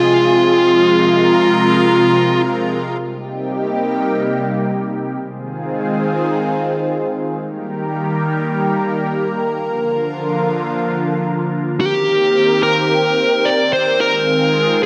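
Synthwave with a nocturnal, moody character, this short excerpt is cut from a longer piece and moves at a steady, straight pulse in 4/4. A lush unison pad holds sustained chords throughout, its thick, detuned sawtooth and square-wave tone opening with a slow attack and shimmering through chorus and phaser, bright and up front in the mix. A dark, smooth electric lead guitar carries the melody, picked with an overdriven edge and trailed by digital delay; it plays only at the start, until 2.4 seconds, then returns at 11.8 seconds to close the passage. The harmony begins on Fm, then shifts at 3.0 seconds into a longer section that passes through Cm7, Fm7, Eb and Bb/D before circling back to Cm7 and Fm7. A moderate hall reverb with a lush tail wraps the sound in a spacious, late-night atmosphere.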